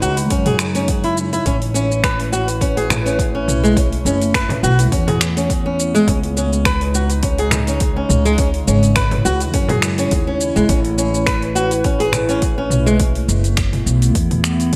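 A lightly swung sixteenth-note groove in four drives this meditative, earthy downtempo fragment, with an overdriven electronic kick landing at 0.3 seconds under a layered deep house kit of finger snaps, metallic hi-hats, shaker and toms that also carries some grit. Up front, a fingerpicked flamenco guitar with fresh strings spins arpeggios through a tape echo until it drops out at 13.0 seconds. An upright bass holds the low end with a woody, thumpy pizzicato tone, saturated and pumping. Behind it all, a nostalgic lo-fi pad of detuned square, triangle and sawtooth waves warbles through chorus and phaser, its slow attack and long release sustaining the chords as it pumps. A tiny, bright frame drum sits close and very quiet from 2.9 seconds, and a light small-room ambience frames the whole cycle of minor and suspended chords.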